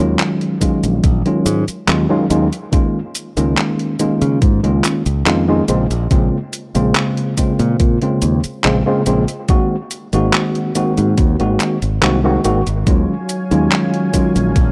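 In a dry, gritty hardware recording, this melancholic, hazy vaporwave fragment sets a worn, slightly out-of-tune tine electric piano, lightly overdriven through built-in speakers with subtle chorus and analog delay, over a bright, direct fingered electric bass and a thumpy, up-front electronic kick that joins at 0.6 seconds beside a tape-warm, detuned 8-bit drum machine of cabasa, handclaps and hi-hat, while the chords drift from Ebm11 through Db69, Bbm9 and Ab9 before a lush, warbling unison pad with chorus swells in on the return to Ebm11 at 12.9 seconds.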